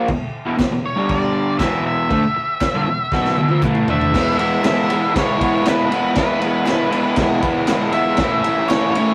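Garage rock with a rowdy, swaggering strut at 118 BPM in E major, this short cut from a longer piece opens on a crunchy, double-tracked overdriven guitar riff, joined almost at once by a gritty, saturated breakbeat kit with a punchy kick and dark cymbals, plus very quiet crisp group handclaps. A dark, fuzzed octave lead guitar carries the melody from 0.9 seconds, and a drum fill from 3.1 to 4.1 seconds leads into a second section that moves from E to A. The whole thing has the rough, up-close feel of a rehearsal room with a touch of moderate reverb.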